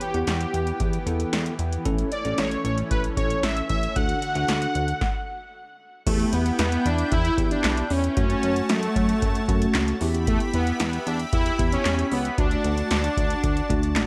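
Synth-pop in a melancholic, cool mood, led by a bold, fat analog synth brass melody with chorus and delay over a lush, detuned unison pad and a bell-like tine electric piano. A glossy, pulse-width-modulated synth bass and an up-front analog drum machine with deep kick, punchy snare, metallic hats, handclaps and crash carry the groove, while a barely audible downlifter sits in the first 1.9 seconds. A brief stop at 5.0 seconds gives way to a new section at 6.1 seconds, heard in a light reverb.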